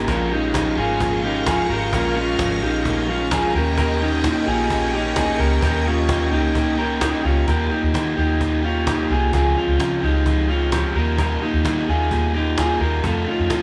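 Heard as a live band in one room bathed in wet studio reverb, this bittersweet, wistful excerpt of jangly indie pop at 130 BPM sets a crunchy overdriven guitar and a dark, slightly broken-up electric guitar picking arpeggios up front over a round, punchy, foam-muted vintage electric bass and a snappy cajon, while a shimmering string machine with ensemble chorus holds soft, sustained violin chords until 7.4 s, as the harmony moves from Bbm7 and Eb7 into Ebadd9 and Dbmaj7 before landing on F7.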